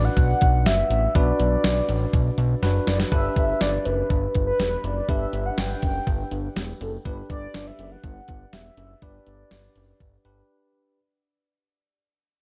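Soaked in dreamy plate reverb and fading out across its 11 seconds, this upbeat, nostalgic synth-pop clip at 122 BPM in G major sets a mellow, horn-like vintage synth lead with chorus, delay and vibrato over bell-like tine electric piano accompaniment, a fat, detuned analog bass sitting up front, and a clean 12-bit drum machine with a thumpy kick and fat snare that enters at 0.2 seconds and throws in a brief fill just before the harmony moves from B minor to G at 3.1 seconds.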